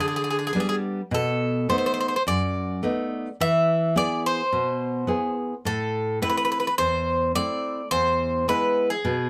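A straight 4/4 pulse at 106 BPM carries this moody, cool piece of Greek folk in A harmonic minor, cut from a longer performance and moving through G, B7, E, Am and back to E. Up front, a picked Greek bouzouki sings the melody with a metallic, double-strung ring and some octave-doubled strings, while a fingerpicked nylon-string guitar, full-bodied and deep in its classical tone, supports it from low E2 upward. Both play together throughout the 9.3 seconds in a moderate studio ambience.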